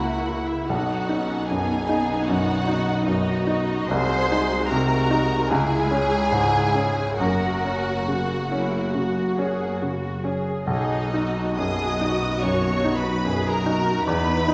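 A wet scoring-stage reverb surrounds this lush, passionate romantic movement for piano and orchestra, cut from a longer piece and moving in a rubato 4/4 at 64-78 BPM in B major. A clear, polished baby grand piano sits up front carrying the melody, while one violin section sings a smooth, vibrato-rich line above it and a second violin section adds a bowed second line beneath. Rich violas in the background supply accompaniment, dark, woody cellos lie distant in the background as well, and a warm double bass section grounds the bass as the harmony travels from B through C-sharp minor and F-sharp back to B.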